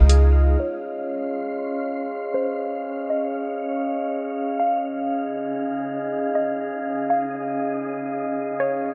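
Floating and dreamy, this half-time hip hop fragment at 120 BPM in Db major opens on an Fm7/Db chord with a deep, round 808-style bass and airy, detuned digital keys that both stop at 0.6 s, while pure glass harmonica chords and a breathy, wind-like noise texture sustain throughout and a hollow, warbling square-wave pluck carries the melody from 0.6 s under a filter sweep in light digital ambience.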